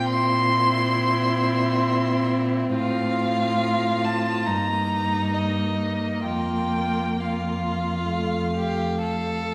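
A lush scoring stage reverb with a long 1.9-second decay surrounds this slow, serene romantic movement for string quartet, a short section cut from a longer piece. The tempo drifts between 63 and 70 BPM in 4/4 with a free rubato feel. Up front, the first violin sings the melody high in its range with a rich, smooth vibrato, though it sits slightly distant, while the second violin plays a close, even second line beneath it with a warm tone. The viola's accompaniment is expressive, coloured by vibrato and gliding portamento, and the cello, also up front, anchors the bass with a close, steady bowed sound. The harmony moves gently from C7 over Bb through F over A and Eb over G, settling on an Fsus4 that resolves to F at 8.1 seconds.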